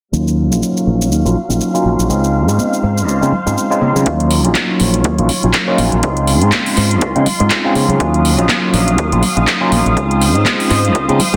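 Groovy and sensual, this filtered disco house cut at 122 BPM in Eb dorian swings its 16ths over an Ebm9 to Dbmaj7 vamp, with a barky, gritty electric piano and a bright, growly fingered bass up front and clear symphonic strings holding smooth-topped chords beneath, all three pumping under sidechain and low-pass filtering, alongside a house kit of handclaps, metallic hi-hats and shaker that pumps under sidechain as well. Tube shaker and congas join in the background at 2.1 seconds, and a dry electronic kick arrives at 4.1 seconds as a filter sweep drives a build-up through a dense, heavily limited mix with light digital reverb.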